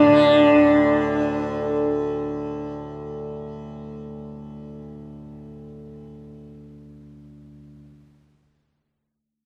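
A dark, woody bowed sarangi carries the melody around D4 for the opening 1.8 seconds, its gliding portamento, light vibrato and ringing sympathetic strings giving this fragment of Indian classical music a devotional, serene feel. Beneath it, a softly plucked tanpura sustains a buzzing, shimmering drone from D2 to D3, sounding up front and continuing alone until 7.7 seconds. The pulse sits at 129 BPM in a straight 4/4, captured as a dry, close 1970s-style studio recording with small room ambience.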